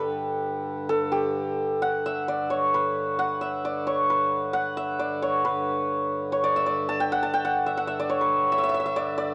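Serene and devotional, this short Hindustani classical passage in raga Yaman on G moves in 3/4 at about 134 BPM and gradually speeds up, with a new section arriving at 5.4 seconds. Up front, the santur carries the melody between G4 and A5 with a hammered, shimmering, ringing tone, while a hand-pumped harmonium sits lower in the mix, holding a reedy, nasal, breathing drone from G2 to D3. The sound is dry and close, like a 1970s studio recording, and the passage is cut from a longer piece.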